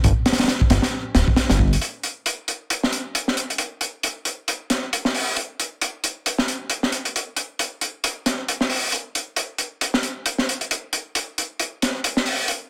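A crunchy, gritty breakbeat kit with a punchy kick and high-tuned snare drives this swaggering, funky 135 BPM breaks excerpt, its saturated, dark, rolled-off sound sitting up front in a small room with high-pass filtering on kick, snare, hats and room, while a fat, nasal, detuned analog bass of sawtooth and square waves with a filter pluck fills the low end only for the opening 1.8 seconds before the kit carries on alone to 12.6 seconds, the swung 4/4 groove framed by light reverb and a dense, heavily limited modern master.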